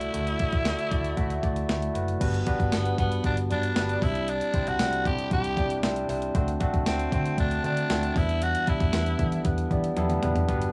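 A breathy, raspy tenor saxophone carries a romantic, uplifting melody from the first moment of this 1980s-style pop excerpt in G major at 116 BPM. It is backed by a clean tine electric piano heard through built-in speakers, a dark, round, foam-muted fingered bass, and an overdriven 12-bit drum machine with a thumpy kick and medium-tuned snare. The saxophone, bathed in tape echo and plate reverb, drops out at 9.5 seconds, leaving piano, bass and drums on an Em7 chord with a drum fill at 10.0 seconds, all captured as a cassette home recording with a small booth-like room feel and the sax, piano and drums up front.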